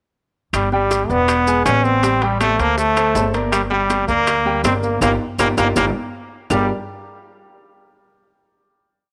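A light, small-room reverb surrounds this short, driving and danceable salsa piece in G minor at 161 BPM, where a brilliant, punchy trombone sits up front with a motif-based melody and light vibrato. Beneath it, a clear grand piano plays a montuno in octaves while a dark, thumpy upright bass plucks a tumbao that anticipates the chords. Ringing timbales and congas sit in the background alongside very quiet tight bongos, woody claves on a two-bar time line and grainy maracas, and the band hits accents from 5.0 seconds with a drum fill at 5.6 seconds before closing on a final chord at 6.5 seconds.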